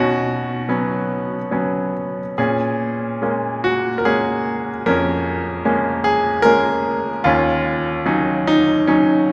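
A bright baby grand piano carries this brief classical excerpt alone, its brilliant, polished tone sitting up front and intimate, with audible action noise close at hand. The mood is dark and melancholic, unfolding in a lyrical triple metre with a free, rubato feel. Its range spans Eb2 to Bb4, and the harmony moves from Bsus2 to Bbm7 at 2.4 seconds, then to Ebm7 at 7.2 seconds. Though the piano's own sustain is short, a wet cathedral reverb with a 4.7-second decay surrounds it, placing the instrument in a church or concert hall. The 9.3-second fragment is cut from a longer piece.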